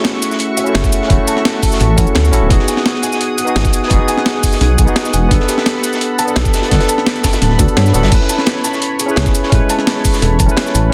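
A straight 4/4 liquid drum and bass groove at 171 BPM drives this warm, uplifting passage in A major, built on a gritty, tape-warm sampler-style breakbeat kit with crash, hi-hat, shaker and snare, a crunchy, rolled-off second break in the background, and a knocking electronic kick that joins at 0.8 seconds. A deep, rumbling detuned saw bass with tube saturation enters at 0.7 seconds and sits up front beneath a barky tine electric piano with digital delay, while a lush, warbling unison pad with chorus and sidechain pumping and a soft, felt-muted upright piano playing arpeggios through tape echo add depth behind. The chords move through Dmaj9, a rootless Emaj9, Gmaj9 and Amaj9, finished with light digital ambience and a dense, heavily limited modern master, in a section cut from a longer piece.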